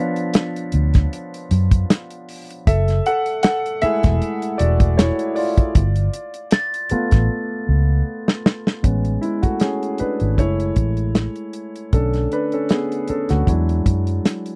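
A lightly swung 16th-note groove in 4/4 drives this lush, smooth 1970s-style soul excerpt, with a dark, tight acoustic kit of kick, medium-tuned snare and hi-hat sitting up front beside a round, foam-muted fingered electric bass. A natural-sounding grand piano solos throughout over rich chords such as C#7b9, a rootless G9 and Amaj7, while a mellow, bell-like glockenspiel played with soft plastic mallets rings out briefly at the start and again around 6.5 s. A drum fill from 7.3 s leads into the second section at 8.8 s, captured in a close, dry studio sound.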